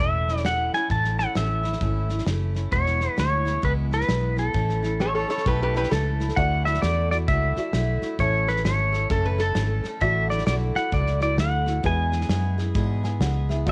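A twangy, bright pedal steel carries the melody with volume swells from the first moment, over a full-bodied picked acoustic guitar with audible finger squeak and a dark, round, foam-muted electric bass sitting up front, joined almost at once by a natural country kit with a punchy kick and medium-tuned snare. This down-home, sunny honky-tonk excerpt swings easily, and a metallic, nasal lap resonator guitar slides in with brief second lines at 5.0 seconds and again later. From 6.4 seconds a worn, woody, slightly detuned upright piano sits in the background and adds a fill at 12.8 seconds, all captured as a small-room home cassette recording with tape character on the acoustic guitar, drums, resonator and piano.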